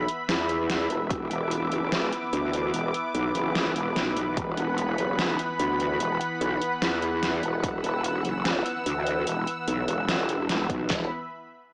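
A lush, airy pad of detuned sawtooth and square voices pumps alongside a growling, wobbling bass with formant-filtered overdrive from the very start of this menacing, chaotic half-time dubstep fragment, as an electronic kit of metallic hats and a deep overdriven snare joins at 0.1 s and punchy kick, handclap and snare hits land at moments such as 1.1 s and 4.4 s, set in a moderate hall reverb heard through a small-speaker tone.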